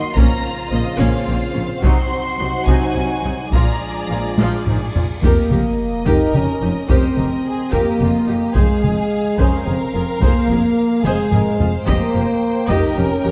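Dramatic and heroic, this epic orchestral film-score passage in 6/8 sets a smooth, vibrato-laden violin melody and a lush second violin line over mellow, up-front French horn chords, expressive violas with portamento, trombone chords that stop at 4.9 seconds, distant cellos and double basses on the bass, and close taiko drums played with heavy sticks, while a huge, bright cymbal swell and sub drop at 4.7 seconds leads into a new section at 5.2 seconds, heard within a dark production with moderate scoring-stage reverb.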